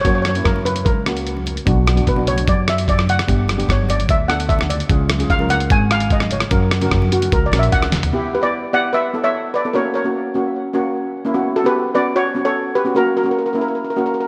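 A straight 4/4 calypso groove at 149 BPM drives this tense fragment, where a mellow, band-limited steel pan carries the melody and its solo with slapback echo and delay over a second, airy steel pan accompaniment, a woody pizzicato upright bass, a muffled, compressed lo-fi sampler-style drum kit with a thumpy kick and fat snare, and distant, bright congas tucked in the background, all set in a big, arena-like concert hall reverb until a drum fill at 7.9 s, after which bass, drums and congas drop away at 8.1 s and the two shimmering pans carry on together.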